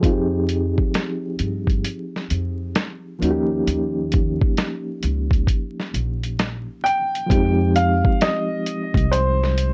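A reedy, gritty electric piano with fast tremolo opens this reflective, melancholic lo-fi hip hop excerpt in F minor at 66 BPM, over a woody pizzicato upright bass and a muffled, pitched-down sampler drum kit with a thumpy kick, all under vinyl crackle and a filter sweep until 7.3 seconds. The swung groove moves between Fm9 and Eb7. At 6.8 seconds an intimate upright piano, vintage and smooth with audible action noise and long sustain, enters with the melody through plate reverb.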